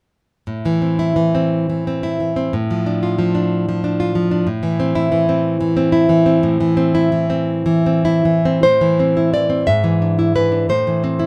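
A rubato 6/8 lilt at 49-64 BPM carries this passionate, intimate romantic piece in A minor for solo nylon-string guitar, fingerpicked up front with a full-bodied, fresh-stringed classical tone in moderate studio reverb, moving from Am through Dm/A before turning at 8.6 seconds to a closing passage where E7/G# resolves back to Am at 10.7 seconds in this short cut from a longer work.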